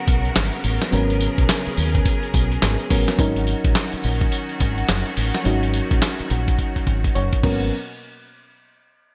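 Soft, mellow electric-piano-like synth keys with chorus open this bouncy, confident new jack swing excerpt, while a lush, distant string section holds sustained chords over a G#m11 to D#m7 progression. A dark, punchy fingered bass and a gritty, compressed sampler-style drum kit with gated reverb enter almost at once; the kit's thumpy kick, snare, hi-hat, handclaps, tambourine and crash sit up front, with a swung sixteenth-note feel. A drum fill at 6.6 seconds closes the passage, all under a bright 1980s-style digital sheen with light reverb.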